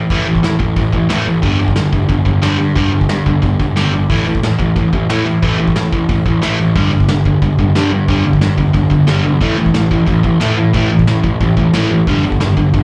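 Heard as a live club gig through the venue's PA, this rebellious, upbeat punk rock excerpt charges along at 180 BPM in a straight 4/4, alternating A5 and G5 chords, with an up-front overdriven guitar riff and a bright, growly fuzz bass over a dark, smooth brushed drum kit of hi-hat, tight kick and medium-tuned snare, until a crunchy second guitar with slapback echo joins in the background at 6.8 seconds.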